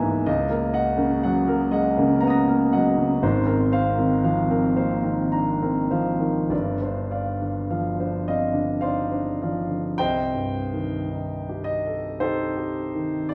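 Impressionist classical solo piano in a slow, rubato 3/4 at 49-63 BPM, this wistful, nocturnal fragment of a longer piece settles into C minor from 3.2 s, where an up-front concert grand with deep bass and an open tone ranges from G1 to A#6 through chords such as Ab69 and G7sus4, turning to a new section on Cm6 at 10.0 s, all bathed in a wet recital hall reverb and a dark, warm production.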